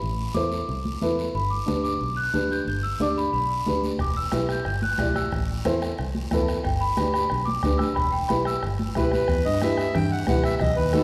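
A straight 4/4 cumbia groove at 181 BPM drives this passionate, danceable snippet in E minor, cut from a longer piece, with congas played with hard hands sitting high-tuned and in the background, and a raspy guiro adding texture beneath them. A round, foam-muted fingered electric bass anchors the low end, while a soft-beater bombo joins the percussion at 4.0 seconds. Over chords moving through Am, G and Em, a large celesta carries the melody in a bell-like, sweet, ringing voice, and a dark, woody upright piano with short sustain supplies the accompaniment, adding a brief fill at 6.2 seconds. At 9.0 seconds a reedy, up-front accordion enters on a second line and takes a solo as the piece moves into a new section. The whole ensemble sits in the lush reverb of a church or concert hall.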